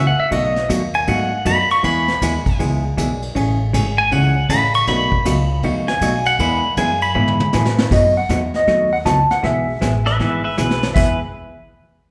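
Playful and down-home, this western swing excerpt moves at 158 BPM in a swung 4/4, set in E major and cycling through B7, E and Amaj7 changes. A bright, twangy pedal steel guitar played with fingerpicks sits up front and takes a solo for the first 7.9 seconds, its compressed, clean tone marked by volume swells and slide. A dark, hollow-body jazz guitar picks out the accompaniment, while an upright bass with steel strings gives a woody, thumpy pizzicato foundation. A vintage brush drum kit with dark cymbals, a medium-tuned snare and a punchy kick enters at 0.3 seconds and adds short fills along the way. At 7.9 seconds a clean, dark lap steel guitar comes to the front with the melody, played fingered with slide. The band sounds like it is playing live in one room, bathed in a wet, large studio reverb.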